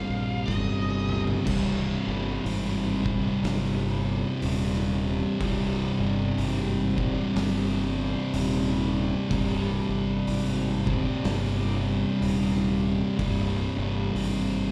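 A brief, dark octave-fuzz lead guitar with wah, distortion and slapback echo opens this brooding stoner and doom metal excerpt over two thick, distorted fuzz guitars grinding out a swung riff in the background, joined by a bright, punchy overdriven bass up front and an oversized low-tuned drum kit that bursts in with a fill at 0.5 seconds. The lead drops out at 1.2 seconds, leaving the heavy riff to carry on over the kit's boomy kick, fat snare and dark, rolled-off cymbals. From 3.0 seconds a very quiet, warbling analog drone of vintage sawtooth and pulse-wave chords with chorus sustains beneath, all heard as a live gig through the venue's PA with small-room club reverb.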